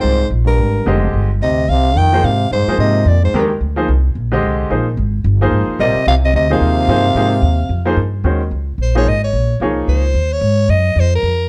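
Intense and searching, this brief swinging jazz excerpt at 220 BPM sets a raspy, growling soprano saxophone melody over a gritty, growling trombone second line, with a brilliant upright piano, its action noise audible, accompanying until 10.0 s and a woody pizzicato upright bass up front beneath, as the harmony moves from F dorian to Eb dorian at 8.2 s, where the saxophone takes a solo in a dark, lightly reverberant mix.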